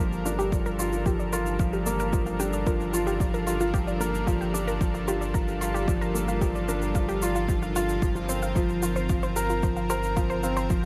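Intimate and hypnotic, this short piano-and-strings electronica cut sets an up-front, felt-muted upright piano riff with audible action noise and tape echo over a lush, detuned unison pad holding sustained chords, a punchy unison pluck tracing background arpeggios through tape echo, a round analog bass anchored on G, and a sidechain-pumped pulse that ties pad, pluck and bass to an overdriven electronic kick arriving at 0.5 seconds, just after a layered shaker enters at 0.1 seconds, all in light reverb as Gm7 gives way to Fsus4/G at 8.0 seconds.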